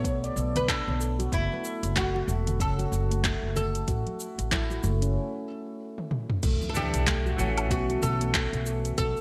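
Bright, 1980s-style digital production with light reverb and small-room ambience frames this earthy organic downtempo excerpt at 94 BPM, swung on the sixteenths. A bright, plectrum-plucked fretless oud carries the melody over ringing, meditative handpan arpeggios, both touched with digital delay, while a woody, thumpy pizzicato upright bass sits up front beside a deep, tape-warm electronic kick, a layered deep house kit with metallic hats, handclaps, cabasa, woodblock, toms and crash under gated reverb, and dry congas in the background. After a break and drum fill, the second section opens at 6.4 seconds with a very quiet impact, and a clean, picked electric guitar with subtle chorus, sidechain pumping and delay joins at 6.7 seconds as the chords move from Bm7 toward B7(no3).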